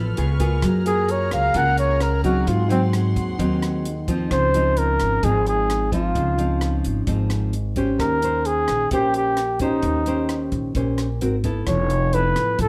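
Bossa nova at 130 BPM in Db major, relaxed and breezy, where a breathy, whispered flugelhorn with vibrato, scooped notes and plate reverb carries the intimate melody up front from 0.9 s over a fingerpicked classical nylon-string guitar, woody pizzicato upright bass and a dark, smooth cocktail drum kit of hi-hat, punchy kick and rim click, while a floating, sul tasto string section holds soft bowed chords only until 4.3 s, all within a moderate studio reverb in this passage cut from a longer piece.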